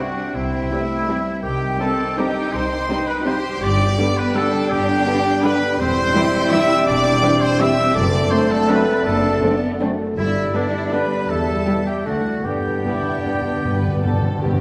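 This elegant, festive classical passage in G major opens with a full orchestra in a flexible, rubato 3/4 at roughly 142-178 BPM. Lush violins carry the expressive vibrato melody over a dark, sliding second violin line, and a bright flute section, clear oboe and mellow clarinet add supporting lines. A rich viola section, dark bassoon, focused cellos, smooth double basses, soft French horns and trombones, and a ringing, fingerpicked concert harp fill out the texture, while punchy trumpet stabs sit up front, all in a reverberant concert hall, until hard-mallet timpani enter at 10.2 seconds and play a crisp fill from 12.4 seconds.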